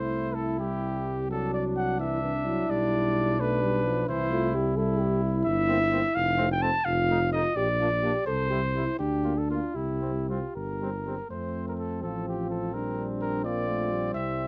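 Stately and warm, this classical brass quintet passage in a flexible, rubato 6/8 is cut from a longer piece. An up-front, mellow trumpet carries the melody with light vibrato over a clear flugelhorn second line, while a dark, smooth-topped French horn and a background trombone with light vibrato fill in the accompaniment above a prominent tuba bass. The dark production sits in moderate studio ambience, and a new section begins at 11.3 seconds.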